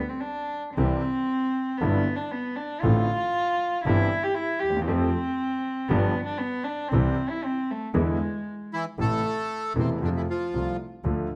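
A nasal, gut-string bowed cello carries a passionate, sultry tango solo from 0.0 s in C major at a rubato 117 BPM, joined at 0.8 s by a clear, deep-bassed concert grand piano and a smooth, bowed double bass with vibrato, before a reedy, bright bandoneon takes the melody at 8.7 s, all set in a large, wet studio reverb.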